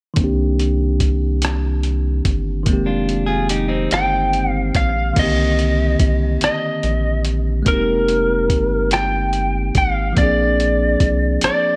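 Slow six-eight R&B with a yearning, late-night mood, cut from a longer piece and set in light digital ambience. A bell-like tine electric piano, heard through a filter sweep over the opening 5.2 seconds, sits atop a rubbery, hollow square bass and a dusty, gritty sampler-style drum kit with a thumpy kick, crash, hi-hat and rim click, while a clean, picked electric guitar adds a brief second line at 2.9 seconds. From 3.9 seconds a bright, slightly broken-up, twangy lead guitar with slapback echo carries the melody up front as the harmony moves between minor ninth and eleventh chords before landing on a dominant seventh.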